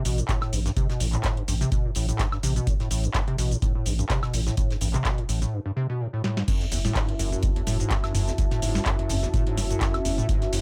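A squelchy, resonant square-wave acid bass sits up front with overdrive, lush chorus and tape echo, its filter sweeping through the opening of this hypnotic, raw acid house excerpt, over a thick saturated sine sub bass that pumps with the sidechain. A dry, deep electronic kick plays alongside a booming analog drum machine with a tonal snare, metallic hats, handclaps, shaker, toms, woodblock and crash cymbal in small room ambience, while a damped 70s drum kit adds a very quiet, fat acoustic snare and hi-hat. After a break from 5.5 seconds and a drum fill, the drop at 6.5 seconds brings in a moody, detuned analog pad with 12-bit sampler grit in the background and a soft, breathy pad with a moving notch, both chorused and pumping over a shift to F#m7.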